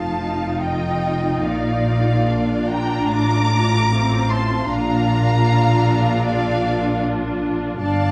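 A serene string orchestra opens together from the first moment in this 8.1-second excerpt from a slow romantic movement in Bb major, moving at 72-79 BPM in 4/4 with a rubato feel over the chords F7, Bb, F/A and Bb. The first violins carry a smooth-topped, focused melody high above a soft-attacked, expressive second violin line, while clear violas fill in the accompaniment and rich cellos and close double basses anchor the bass. Every section is bowed with vibrato and sounds lush, and a moderate reverb in a large room gives the production a dark, warm glow.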